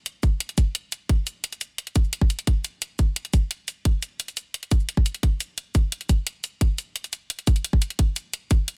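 Bright, overdriven electronic hi-hats and shaker open this dark, tense drum and bass excerpt at 0.1 s, joined a moment later by a tight electronic kick drum. The tempo is a brisk 174 BPM in straight 4/4 time, and the two drum parts carry the whole passage together. The layered, produced hats bite with a gritty edge, while the kick sits up front with a tape-warm weight. The sound is dry, with little reverb, and the master is dense and heavily limited in a modern style. Both parts run nearly the full length of this short cut from a longer piece, with the kick stopping at 8.6 s.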